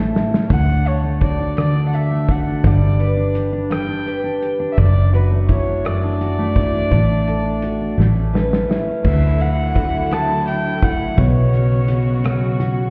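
Swaying and romantic, this six-eight pop ballad in D major moves at 56 BPM, with a reedy, gut-toned bowed violin carrying the melody over a full-bodied picked jumbo acoustic guitar, a round, foam-muted fingered electric bass and a natural country drum kit with dark cymbals and a punchy kick that opens with a fill and adds another from 8.0 to 9.0 seconds, before a lush studio string section enters at 9.0 seconds with vibrato-rich sustained chords, the whole mix sounding muffled as if heard through a wall in a stone room.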